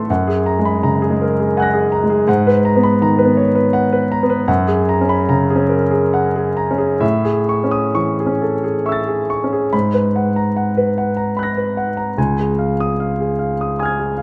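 Hazy and mysterious, this impressionist classical piece for solo piano unfolds in a flexible, rubato 3/4, with the tempo drifting between 62 and 85 BPM. A concert grand carries everything alone, its clear, natural tone sitting up front and intimate, with audible action noise and a deep bass reaching down to C#2 while its upper register extends to A#6. The harmony glides through F#add9, G#m9 and Amaj7 before a new passage begins at 9.7 seconds, returning to G#m9 and settling on C#add9 at 12.2 seconds. Close, detailed microphones capture the instrument, and a moderate concert hall reverb with a 2.3-second decay surrounds it. The recording is a short passage cut from a longer piece, lasting just over 14 seconds.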